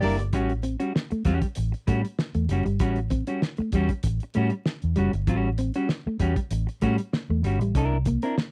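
A dry, close 1970s-style studio sound with vinyl crackle frames this energetic, strutting funk excerpt at 97 BPM in A mixolydian, where a cloth-damped, thuddy drum kit with fat snare, tight kick, hi-hat and a gritty, muffled edge sits up front beside a round, foam-muted vintage fingered bass, while a dark, clean electric guitar comps over chords moving from A6 to C9 and a mellow electric guitar plays a riff throughout the 8.5 seconds.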